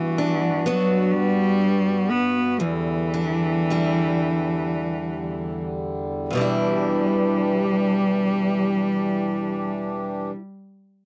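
This Celtic folk slow air is a brief fragment cut from a longer piece, mournful and haunting in mood, moving in a rubato 6/8 that slows down over its first 6.3 seconds. A single bowed cello carries the melody up front, its tone clear and focused with vibrato, moving within the range of E3 to B3. Beneath it, a picked steel-string acoustic guitar with a boxy parlour character provides the accompaniment, while a pedal harmonium holds reedy, breathing sustained chords further back. All three instruments play throughout, with the harmony moving from Gmaj7 to Em7 at 2.6 seconds and a new section arriving at 6.3 seconds. The sound is dry and close, in the manner of a 1970s studio recording with little reverb, which gives the small ensemble an intimate presence.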